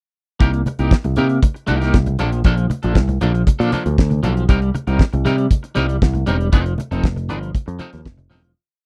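A dry, close 1970s-style studio sound frames this short, sultry and glamorous disco breakdown in C dorian at 118 BPM, where a damped 70s drum kit with a fat snare and tight kick drives a four-on-the-floor beat with sixteenth-note hats up front, a dark, round picked electric bass plays a syncopated line with muted ghost notes and chromatic approach notes, a twangy, slightly broken-up electric guitar with tremolo adds a choppy sixteenth-note disco part over Cm7, Bbmaj7 and F7, and low-tuned, soft-handed congas sit in the background from 0.7 seconds before the whole piece fades out from 6.5 seconds.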